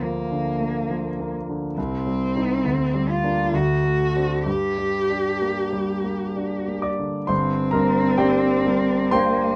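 Lyrical and serene, this short cut from a longer romantic classical duo moves in an unhurried triple metre with flexible rubato. A single bowed cello carries the expressive melody with vibrato and gliding portamento, while a polished, intimate concert grand accompanies throughout with deep bass, long sustain and audible action noise, its harmony drifting from Bb/D through Cm and D7 to settle on Gm by 4.5 seconds. The dark, warm production places both instruments up front in a moderate studio ambience, and a new section begins at 7.3 seconds.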